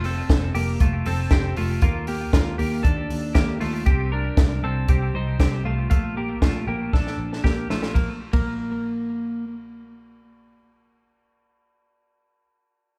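Youthful and breezy, this jangly indie pop fragment sets a bright, twangy twelve-string electric guitar spinning arpeggios through a digital delay over a round, foam-muted vintage picked bass and a dry compact cocktail drum kit with a punchy kick, high-tuned snare and dark cymbals, all captured live in one room with moderate large studio reverb, moving from F through Ebmaj7, Cm and Bbmaj7 to a drum fill at 6.9 seconds before the drums drop out at 8.5 seconds and the bass carries on alone after the guitar stops at 9.4 seconds.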